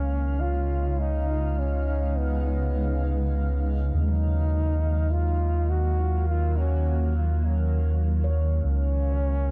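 Ambient in free time and Eb minor, this hazy, deep fragment from a longer piece sets a warm solo trombone melody with vibrato, tinged by cassette tape, analog delay and plate reverb, over a cloudy, evolving granular pad and a round, up-front dub sub bass, while a very quiet, ringing handpan adds meditative arpeggios across the Db13, Ebmadd9 and Db69 chords of a lightly reverberant home cassette recording.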